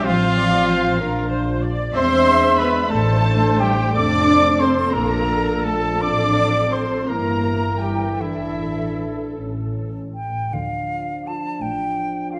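Beginning at once, this elegiac, yearning classical excerpt in D minor unfolds in a rubato 6/8 at 50-65 BPM, with veiled, con sordino violins carrying the melody above a second line shared by an airy, bright silver flute and very quiet lower violins, lush muted violas in accompaniment, sustained chords from a dark, punchy French horn section, clear trumpet stabs that drop out at 9.4 s, and a bass of bowed cellos and double basses, set in a wet scoring stage reverb as the harmony arrives on D minor at 10.5 s.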